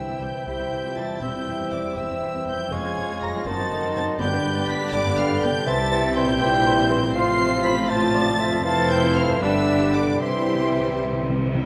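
Classical and cheerful in a spirited, rubato 6/8 at 80 BPM in C major, this full orchestral passage cut from a longer piece sets a lush, vibrato-rich violin section high on the melody over flute, mellow cor anglais, clarinet and background violins on second lines, bassoon and smooth violas in accompaniment, dark horns and punchy trombones holding chords, a faint ringing harp in arpeggios, and cellos and double basses on the bass, with hard-mallet timpani entering at 4.2 seconds and returning for a fill at 10.2 seconds, all bathed in a wet scoring-stage reverb.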